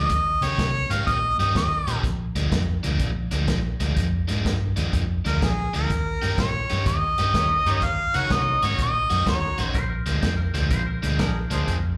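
A clear, close-miked harmonica leads this swaggering, soulful electric blues shuffle at 124 BPM, its overdriven, slapback-echoed jazz-style lines full of vibrato and scooped notes. Behind it sit a crunchy overdriven guitar riff, a dark, round, foam-muted fingered electric bass and a vintage drum kit with a punchy kick, medium-tuned snare and rolled-off top. A mellow horn section adds soft-attack stabs from 7.3 seconds, and a twangy, clean lap steel slide line with slapback echo and analog delay enters at 9.8 seconds, all heard as a live club gig through the venue's PA with light reverb.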